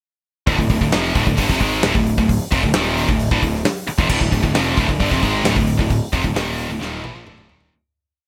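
At 0.5 seconds a heavy, aggressive heavy metal riff in D minor kicks in at 132 BPM, with a tight, bright distorted guitar playing a power-chord riff up front, a scooped high-gain guitar with its own power-chord riff sitting in the background, a growly fuzz-overdriven picked bass driving eighth notes that double the guitar riff, and a big acoustic rock kit with a punchy kick, medium-tuned snare, hi-hat, crash and toms in a dry studio room, before the piece fades out from 5.9 seconds and ends on a drum fill at 6.8 seconds.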